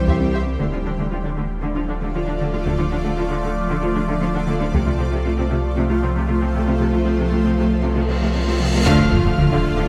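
A brooding, tense cinematic film-score cut blending orchestra and electronics at 116 BPM in D minor, built on a shimmering, ethereal pad up front, a soft harp-like synth pluck playing arpeggios, a round sine sub bass, and lush bowed viola, cello and double bass sections in the background, while a close taiko ensemble with heavy sticks hits at the start, around 4.7 seconds, and near the end. Over a moderate concert hall reverb the chords move from C to D minor to F over C, and a huge cymbal swell builds from 7.8 seconds into a band accent and impact at 8.9 seconds. There the harmony returns to D minor as a focused, distant studio violin section takes a high melody on F6, the symphonic violins return with a second line, and very quiet dark French horns and tight trombones add sustained chords.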